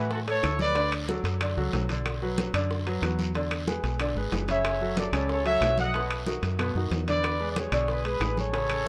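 A fast, straight 4/4 salsa groove at 185 BPM drives this sunny, danceable snippet from a longer piece, with congas, bongos, timbales, claves and guiro filling in behind the band after the first fractions of a second. The percussion sits in the background: bright, damped congas struck with hard hands, tight high-tuned bongos, ringing metal-shell timbales and woody claves, while the raspy guiro sounds close. Up front, a deep dub fingered electric bass gives a dark, round, punchy foam-muted tone, and a clear grand piano with long sustain carries the accompaniment through chords moving from A6 and D6 through Bm, E7, F#m and B. A trumpet section in jazz style, with light vibrato and a present, up-front sound, states the melody briefly at the start and returns from 4.5 s to 8.9 s. Light reverb gives the whole a gentle sense of space.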